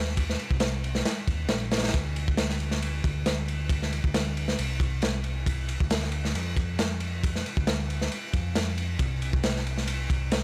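A swaggering breakbeat groove at 136 BPM in 4/4 pushes forward with a light 16th-note swing, set in D phrygian and carrying an energetic charge through this short cut from a longer piece. A crunchy, gritty drum kit sits up front with a tight kick, medium-tuned snare and dark ride cymbal, its saturated, rolled-off sound coming from a studio room. A picked electric bass opens at 0.0 seconds, just ahead of the drums, dark and round with tube saturation, ranging between Bb1 and F2 in a dry mix.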